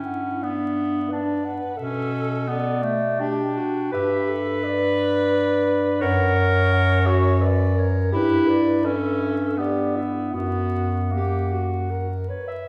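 Set in a swaying triple metre with a freely breathing rubato, this short passage from a longer work is a lyrical classical piece for single-reed quartet, elegiac and melancholic in mood. A clarinet carries the melody with a soft attack and a distant, roomy presence, while an alto saxophone shapes a second line with vibrato; together these two voices share a dark colouring. Beneath them, a second clarinet sits up front with a warm accompaniment, and a mellow bass clarinet with a smooth top anchors the low register, also placed close. The harmony moves from G through G/B and back to G, then leans onto F# at 6.0 seconds and Em/G at 8.1 seconds before settling on F# again. The ensemble is heard from further back in a wet recital hall, with vinyl crackle lending the sound an aged patina.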